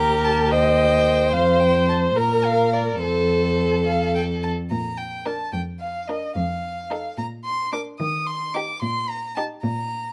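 This is a quick classical-period movement for string quartet in Bb major, graceful and spirited, moving at 73 beats per minute in 6/8 with a straight feel, cut from a longer piece and tuned slightly low. The first violin carries the melody from C5 up to Eb6, its tone rich, smooth and even with vibrato, sitting close and up front. The second violin holds a second line between G4 and C5 with the same vibrato and a smooth top, while the viola fills in the accompaniment with a focused sound and vibrato. Beneath them the cello plays the bass from Eb2 to Eb3, sul tasto with light vibrato, a soft attack and an airy bow, giving it an intimate, close presence up front. The opening section runs to 4.7 seconds, where a second section begins; the harmony moves through Bb, F and F7 before settling on Eb, and the second violin and viola stop at 9.6 seconds. A light reverb gives the quartet a gentle sense of space.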